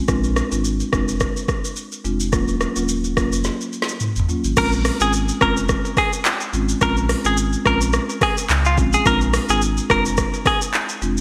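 A twangy, clean electric guitar carries the melody from 4.6 seconds, picked, compressed and touched with delay, sitting up front in this smooth, hypnotic afrobeats excerpt in Bb minor at 107 BPM with a lightly swung sixteenth feel. Beneath it, a rosewood marimba with medium mallets and a full, sine-and-triangle sub bass with an octave move through Bb7, Ebm7 and Bbm7 harmony. An electronic, overdriven afro-pop kit with gated reverb drives it all: a deep kick, woody snare, metallic hi-hats, shaker, handclaps, rim clicks, toms and crash, with a drum fill from 3.5 to 4.6 seconds, all in a bright 1980s-style digital mix with light reverb.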